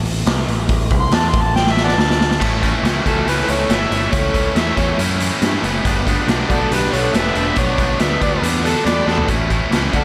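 Driving and swaggering, this blues rock and southern rock power-trio excerpt moves at 140 BPM in A mixolydian, opening with a growling, overdriven bass and a raw garage drum kit with a punchy kick and a saturated, gritty room sound. An amplified harmonica with light vibrato, scooped notes and tongue slaps enters at 1.0 seconds, and after a drum fill a crunchy, double-tracked rhythm guitar riff arrives at 2.4 seconds. A dark, distorted lead guitar with slapback echo sits in the background from 3.1 seconds, and a lush hall reverb gives the band a big arena sound.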